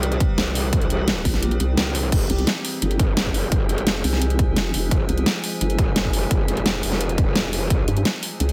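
A nasal, resonant vowel-sweep wobble bass pushes up front from 1.3 seconds in this dark, tense slice of technical drum and bass at 172 BPM in F harmonic minor, arriving over an aggressive, saturated growl bass with a bright chorus edge that has been playing from the start. Beneath them, a dubstep kit with a huge snare and metallic hats drives alongside a punchy, tape-toned electronic kick, which drops out from 1.4 to 2.1 seconds before the drop moves from C to Fm. An eerie, warbling FM drone sits in the background with built-in reverb and sidechain pumping, all set in a dense, heavily limited mix with little room sound.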